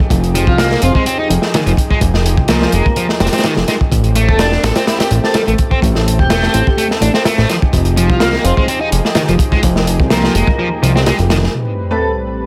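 A fat, thick analog bass sits up front in this raw, energetic breakbeat excerpt, its detuned sawtooth tone giving a heavy low end at 126 BPM with a light 16th-note swing. Beside it, a crunchy breakbeat kit of gritty, saturated acoustic drums, with a tight kick, medium-tuned snare and hi-hat, carries a rolled-off top and a close studio-room feel. A sludgy, overdriven electric guitar picks a riff treated with delay, while an airy, dreamy lead adds a soft, vibrato-tinged melody colored by chorus, phaser, delay and a thin AM-radio filter. Underneath, a lush unison pad holds sustained chords that pump against the sidechain, moving through Fm9 and Am7 before returning to Fm9. At 11.5 s the drums and bass stop as an electronic sub drop lands on an Am9 chord, and a bold, bright orchestra-hit-like synth stab flashes at 11.9 s before the pad rings out in light reverb.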